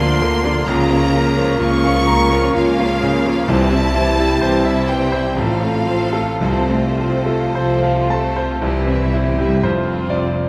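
A romantic classical movement for piano and orchestra in F major, this lyrical, lush excerpt moves in a rubato 3/4 at roughly 53-68 BPM. The concert grand piano sits up front carrying the melody with a clear, smooth tone, deep bass and long sustain, joined by a focused, close violin section that also carries the melody with vibrato. Behind them, a second violin section adds an expressive second line, violas supply a distant accompaniment, and cellos and double basses anchor the bass with an even, bowed richness. A dark, roomy French horn section holds sustained chords in the background until 9.3 seconds, while timpani struck with hard mallets enter at 3.5 seconds, sounding articulate and dry, and play a fill from 8.6 seconds. The harmony passes from Bb/D and Bbm/Db through C and F/A to settle on F, all bathed in a generous scoring-stage reverb.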